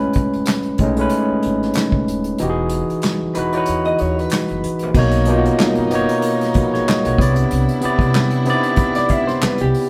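A barky, lightly overdriven tine electric piano sits up front over woody, thumpy pizzicato upright bass and an unplugged drum kit played with bundle sticks on punchy kick, snare, hi-hat, handclaps and crash in this soulful, smooth neo-soul R&B at 94 BPM with a swung 16th feel. The kick drops out at 2.4 seconds, a slightly broken-up, picked electric guitar through a small old amp adds a second line at 3.4 seconds, and a soft-attack, sul tasto string section with vibrato holds chords in the background from 5.0 seconds, as major-ninth harmony moves through a moderate stone room as the band plays live.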